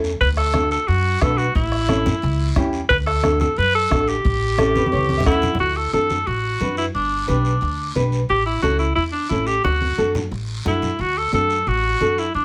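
A moderate studio reverb frames this joyful, sunny cumbia excerpt from a longer piece, where a punchy, forceful alto saxophone sits up front with light vibrato and a vintage pop-style solo voice. Beneath it, a dark, fingerpicked nylon-string guitar and a woody pizzicato upright bass carry the harmony, adding a guitar fill near 5 seconds. A raspy guiro adds texture and hard-handed, low-tuned congas keep to the background, while a soft-beater bombo drops out at 5.4 seconds as the second section begins.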